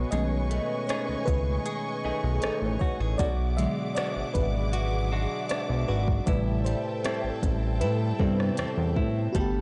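A lush, dreamy FM electric piano with a soft pad layer takes the lead, carrying a solo from the start to 9.3 seconds with chorus and tremolo colouring its decaying, detuned tone. This moody, longing contemporary R&B excerpt moves at 78 BPM in a straight 4/4, its chords shifting from B13 to E9 and then to Am7. A fat, sawtooth analog bass sits up front with a filter sweep and sustained, mellow notes, while a direct-recorded clean electric guitar picks compressed arpeggios through an analog delay. A dark, woody studio string section holds bowed chords with vibrato and sidechain pumping, and a smooth, electronic R&B drum kit supplies soft kick, hi-hat and rim click, re-recorded in a large room. The overall sound is dry and gritty, with transformer saturation and a rolled-off top end.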